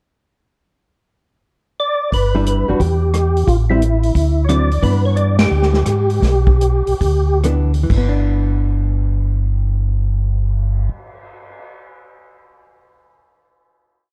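Greasy and swinging, this complete soul jazz organ trio piece in G major moves in a swung 4/4 at 124-178 BPM, slowing down from 4.8 to 7.9 seconds before settling on a held final chord at 7.9 seconds. A percussive tonewheel organ carries the melody from 1.8 seconds, its round, clean tone marked by third harmonic percussion, chorus vibrato and a slow rotary speaker as it states short motif-based period phrases. A second, mellow tonewheel organ plays a two-feel bass line with audible key click through a slow rotary speaker, sitting loudest and up front. A warm soul drum kit keeps time on the hi-hat with sticks, adding ride, crash, cymbal swell, rim click, a medium-tuned snare and a tight kick, its dark cymbals and rolled-off top heard in a roomy, distant space. A clean, compressed hollow-body jazz guitar, fingered, comps in syncopated three- and four-note chord shapes over changes like G6, Em, Am7 and D9. 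The whole band hits an accent at 5.3 seconds, and the dark production wears a light reverb.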